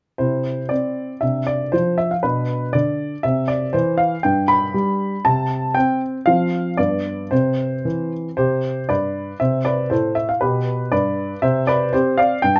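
A baby grand piano opens at 0.2 s, playing alone in a cheerful, graceful classical-period sonatina with a straight two-beat pulse. Its tone is warm and sits up front, reaching from the low G2 up to B5. The harmony moves from C through Dm7/C and Bm before settling on G, then passes through a brief stretch at 5.2 s where the chords fall away, followed by F5 and G returning to C. At 8.4 s the opening section begins again, this time colored by Amadd9 and G/B before ending on C5. The recording is dry and intimate, captured with close, detailed microphones that bring out every note of this short passage, which is cut from a longer piece.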